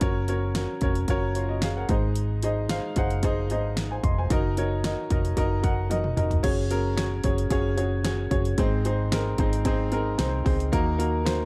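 A straight 4/4 pulse at 112 BPM drives this bittersweet, dramatic piano-driven pop excerpt, where a woody, boxy upright piano sits up front over a round, foam-muted fingered electric bass and a layered pop drum kit with a punchy kick and a fat snare, a drum fill at 5.9 seconds leading into a second section that opens on Gbsus2 and moves through Ab and Ebm in a dark, dry production.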